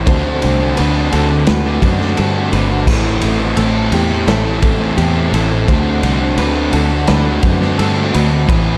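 A dark, warm production with light studio reverb frames this wistful, dreamy rock fragment in a shoegaze and dream pop vein, where an electric guitar through a small old amp plays lo-fi, compressed, slightly broken-up arpeggios in the background with lush chorus and analog delay, a raw garage guitar drives an overdriven picked riff trailed by reverse reverb, a thick fuzz guitar adds a distorted riff with subtle chorus farther back, a round, foam-muted fingered electric bass sits up front, and a gritty, saturated raw garage drum kit with a punchy kick, medium-tuned snare, crash and ride cymbals and a rolled-off top, captured in a bright stone room, enters at 0.1 seconds over chords moving from D7 to Am and back to D7.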